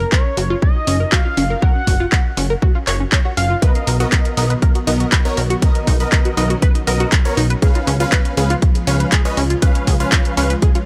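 Progressive house with a driving, bittersweet mood, where a thick unison lead with vibrato carries the melody until 3.6 seconds over tight, chorused and phased sequenced synth arpeggios, a punchy, funky analog bass, an up-front tape-warm kick and a house kit of handclaps and hi-hat; mellow supersaw stabs enter at 3.6 seconds and a very quiet, morphing wavetable pad joins with sustained chords at 4.3 seconds, with sidechain pumping on the bass, arpeggios and stabs, all in a dry mix.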